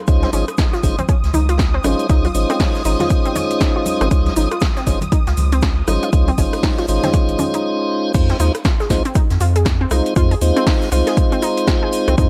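Deep house at 119 BPM in Db major with a relaxed, swung feel, cut from a longer piece, where an overdriven, up-front electronic kick and a punchy drum kit with metallic hats, cabasa and rim clicks sit alongside a very quiet big-band kit, a round, dark analog bass and scooped tonewheel organ stabs through slow rotary speaker and analog delay pump beside detuned analog pluck arpeggios with tape echo, while a silky string pad and bright, dry congas drop out around 7.6 seconds as a drop arrives at 8.1 seconds, moving from Dbmaj9 to Fm7.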